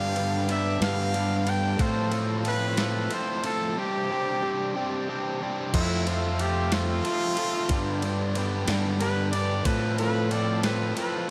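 Indie rock in 6/8, wistful and carefree, where a clear, distant trumpet carries the melody and takes a solo from 5.7 s over a bright, double-tracked riff on overdriven semi-hollow guitar with slapback echo, a growling, punchy fingered bass, 12-bit drum machine beats with a thumpy kick, and soft, flute-like tonewheel organ chords turning through a slow rotary speaker in the background, the mix set in a lush hall reverb that gives a big arena sound.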